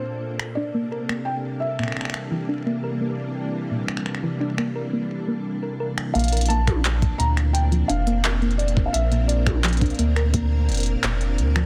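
Lightly reverberant and densely limited, this playful, intricate IDM fragment in Bb lydian moves at 86 BPM, where a felt-muted upright piano with audible action noise carries a soft, intimate melody through tape echo over silky, vintage string-machine chords thickened by ensemble chorus. A tine-like, FM-style synth pluck with a dark noise layer spins chorused, echoing arpeggios while a glitchy electronic kit of finger snaps, handclaps, clicky hi-hat and toms, recorded in a small room, adds a softly clipped snare. At 6.2 s a deep, round sine sub bass arrives up front with tube saturation, joined at 6.7 s by a gritty, pitched-up, thumpy sampler-style kick as the harmony settles from Bbmaj9 and C13 onto Bbadd9.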